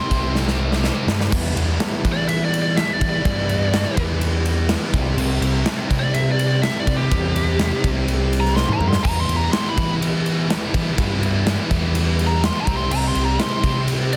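A biting, overdriven lead guitar opens this cathartic, restless stretch of quiet-loud alternative rock, riding a thick, double-tracked fuzz riff and a heavy high-gain guitar set in the background that drops out at 1.1 seconds and returns at 9.0 seconds. An amped, overdriven fingered bass and a big, up-front acoustic drum kit with punchy kick and bright cymbals join almost at once, and after a drum fill the lead guitar takes a solo from 1.3 seconds to the end over chords moving between C and E minor. The mix is dry, dense and heavily limited.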